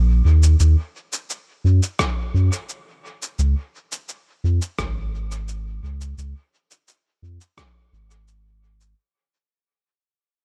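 A round, sine-like sub bass opens this meditative ambient dub excerpt at 0.0 seconds, sitting up front in the mix with a fast attack and long, mellow sustain between Ab1 and Gb2. At 0.4 seconds a muffled, compressed cabasa and rim click join, sounding sampler-like and re-recorded in a small room, and thrown into dub echo. An overdriven electronic kick drum arrives at 2.0 seconds, layered and punchy, adding grit alongside the percussion. The tempo is a straight 86 BPM in 4/4, tuned to A4 = 441 Hz, and the whole stretch fades out over its nine seconds. The mix is dry of reverb yet heavy with echo, leaving a deep, spacious pulse carried mostly by the bass.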